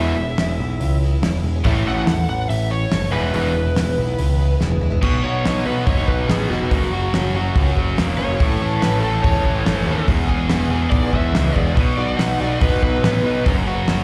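Sunny and driving, this classic rock excerpt moves at 142 BPM in a straight 4/4, centred on B mixolydian and cut from a longer piece. It sounds like a live club gig heard through the venue's PA, with light reverb and a small-room ambience. A growling, up-front electric bass with overdrive anchors the low end, while an overdriven electric guitar with slapback echo plays a riff alongside a bright, distorted guitar tucked in the background. A very quiet, shimmering plugged-in twelve-string acoustic adds octave-doubled accompaniment. The damped 70s drum kit enters at 0.4 seconds with a fat snare, tight kick and dark cymbals, and plays a fill just before 5.0 seconds. An overdriven slide guitar, played with fingerpicks and colored by slapback and tape echo, carries the melody from the start, and from 5.0 seconds it takes a solo over chords moving from B through F#, A and E.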